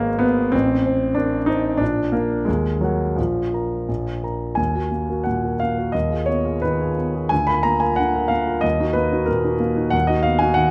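A grand piano sounds alone from the first moment, warm, intimate and up front, with the mechanical noise of its action audible beneath the notes. This is a romantic classical character piece in a minor key, passionate and bittersweet, moving in a flexible two-beat metre with rubato. The writing spans from deep in the bass to high in the treble, and the instrument's long sustain lets each chord linger into a moderate recital-hall reverberation. Harmonies open rich and coloured, darken through a diminished chord, and settle on the home minor before a brief unharmonised moment at 3.2 seconds. A new passage begins at 4.6 seconds with a rootless minor voicing and a half-diminished chord over an E-flat bass, then returns home and ends on a major chord at 9.9 seconds. Close, detailed microphones keep the tone natural, and the passage is cut from a longer work.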